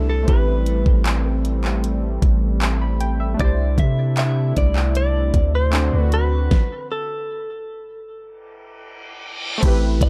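Longing and moody, this contemporary R&B excerpt moves at 77 BPM in A minor. A clean, direct-recorded electric guitar carries the melody over round, chorused sawtooth keys and a smooth, detuned, sidechain-pumped pad through Am9, C69 and D7, while a deep, sine-toned 808 bass and a produced electronic kit with a knocking kick, fat snare, handclaps, hi-hat and crash (from 0.3 seconds) sit up front, and a faint downlifter hovers beneath. The pad ends as a stop arrives at 6.5 seconds, and a reverse cymbal appears at 8.7 seconds in a dark, dry mix.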